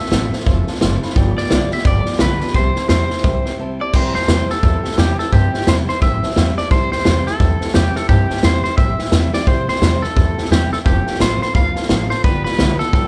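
Rollicking and rowdy, this swung rockabilly passage puts a twangy, slightly broken-up electric guitar with vibrato on the melody, over a woody, thumpy pizzicato upright bass and a punchy, up-front vintage drum kit. A bright, full-bodied jumbo acoustic guitar and a warm upright piano sit in the background, with the piano adding a short fill at 0.6 seconds, the band hitting a brief break at 3.6 seconds, and the drums adding a fill at 9.3 seconds. The group plays live together in one room, and a moderate large-studio reverb lends the performance space.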